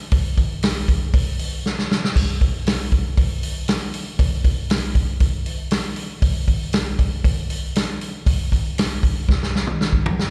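A vintage acoustic drum kit starts at 0.1 seconds, laying down a swaggering, gritty rock groove at 118 BPM in a straight 4/4 feel. The kit sits up front, with a punchy kick, a medium-tuned snare, hi-hat, toms and a splash cymbal, and its dark cymbals and rolled-off top give it a warm, natural character. A drum fill breaks in at 1.6 seconds, and another closes out the passage from 9.3 seconds. The sound carries a light reverb and comes across as a live gig heard through the venue's PA, with the reverb of a recital hall around it. This short section is cut from a longer piece and stays on a single section throughout.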